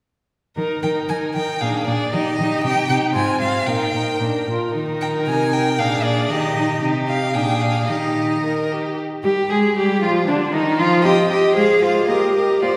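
The cello stands out most, sitting up front with a warm, focused tone and a smooth top as it carries the bass line from 0.6 seconds, its bowed vibrato reaching from Ab2 up to Ab4. This is a quick, lively classical-period movement for string quartet in Eb major, moving at 115 BPM in a straight 2/4. Two rich-toned violins share the upper register: one plays a second line from 0.6 seconds, while the other enters at 0.8 seconds with the melody, climbing as high as Ab5. Both violins are bowed with expressive vibrato and portamento, and the viola fills in the accompaniment with a similarly focused, smooth-topped sound. The harmony circles Eb, Bb7, Cm and Fm before a brief unharmonised moment at 9.0 seconds opens a restatement of the opening section that turns through Dm and Ebsus2. A wet concert hall reverb surrounds the spirited playing in this excerpt, cut from a longer piece.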